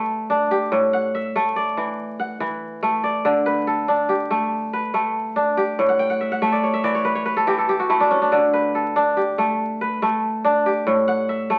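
A solo kora, fingerpicked and ringing, sits up front in this flowing West African traditional excerpt in 12/8, its crisp tone reaching from A2 to G5. Between 5.9 and 8.3 seconds the kora plays a fill. A wet studio reverb and the crackle of a very old 78 rpm record give the sound a warm, aged patina.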